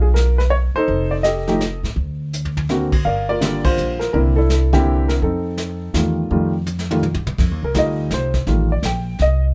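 A band playing live in one room comes through with light reverb. An intimate baby grand piano, its action noise audible and its notes short in sustain, sits up front carrying the melody. A woody pizzicato upright bass with steel strings is also up front. A vintage brush kit with dark cymbals, a medium-tuned snare and a tight kick sits a little further back. This is a sophisticated, playful jazz piano trio in 3/4 at 166 BPM with a swung feel in F mixolydian, moving through chords such as Gm7, C9 and F9, with a band accent at 3.6 seconds and drum fills along the way before the piano takes a solo from 7.4 seconds to the close of this cut from a longer piece.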